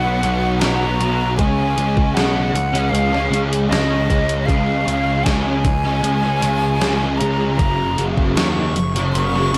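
A gated 80s digital drum machine enters at 0.2 seconds with a steady, straight 4/4 pulse, pairing a thumpy kick and hi-hat with a sampler-style snare wrapped in gated reverb and a tape-tinged, small-room character, in this blissful, hazy shoegaze and dream pop rock excerpt. Up front, a double-tracked, compressed fuzz guitar plays a bright, distorted riff thickened by ensemble chorus, while a punchy, overdriven fuzz bass anchors the low end. Above them, a breathy jazz flute carries the melody with vibrato, a crisp chiff on each attack and a slapback echo, all set in a light reverb.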